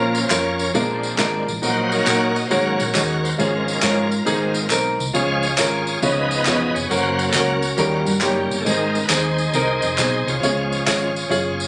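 This phone recording from inside the room carries light reverb and studio ambience, cut from a longer uptempo gospel piece in Db major at 136 BPM with a swung 4/4 feel and a hopeful, reverent mood. A bright, shouting tonewheel organ takes the solo up front, lightly overdriven with key click and a slow rotary speaker, sustaining chords over a clear baby grand piano with short sustain, a dark, round, punchy hollow-body short-scale electric bass, and band-limited vintage tambourine, tube shaker and group handclaps that come in at 0.1 s. The progression runs from Bbm through Bb7, Ab9sus4, Db7, Gb and Eb7 before resolving to Db at 10.4 s.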